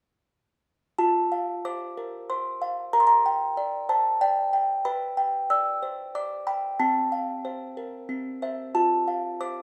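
A classical lullaby for solo music box in F major, moving at an unhurried 92 BPM in a straight 3/4, with an innocent, dreamy mood in this brief passage cut from a longer piece. The music box plays from 1.0 to 9.6 seconds, ranging from C4 up to E6 with a delicate, tinkling, slightly out-of-tune voice that sits up front, tuned a touch high at A4 = 441 Hz. A moderate scoring-stage reverb surrounds it as the harmony drifts from F through G minor and G major shapes before settling back on F by way of C.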